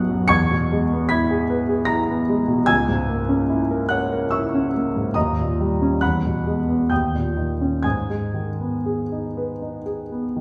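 A warm concert grand piano carries this short excerpt of a romantic nocturne alone, its intimate, natural tone reaching from deep bass up into the high treble, with the noise of the action audible beneath the notes. The music is in G# minor and 3/4, moving with rubato between roughly 59 and 78 BPM, and its melancholic, yearning harmony travels from E through A#m7b5/C# and D#7 before settling on G#m at 7.8 seconds. The piano sits up front, yet a wet recital hall reverb lends the sense of hearing it from further back in the room.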